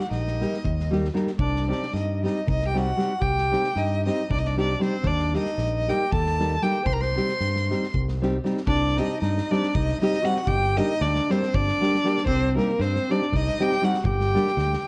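Washed in concert-hall reverb and the warbling pitch drift of worn cassette tape, this bittersweet, virtuosic stretch of Balkan wedding-band folk in 7/8 puts a rich, smooth bowed violin melody with vibrato up front, with a dark, distant, classical-style clarinet carrying a second line, over fingerpicked nylon-string guitar, a direct fingered electric bass and a loose acoustic drum kit with a punchy kick, set back in a pumping studio room.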